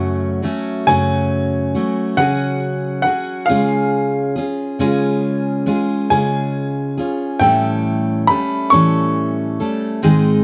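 Melancholic and intimate, this short passage, cut from a longer piece, sits in an acoustic folk setting for a small group with a straight 6/8 feel. A picked steel-string acoustic guitar carries the accompaniment from start to finish, its full-bodied, jumbo tone placed up front, with finger squeaks audible on the strings. A bright upright piano enters at 0.9 seconds to carry the melody high in its register, its woody, brilliant notes decaying quickly, before falling silent at 9.6 seconds. The harmony moves from F#m through C#sus4 and C# before settling on A7. Close, detailed microphones and little reverb keep the sound dry and natural, as if the players were seated just a few feet away.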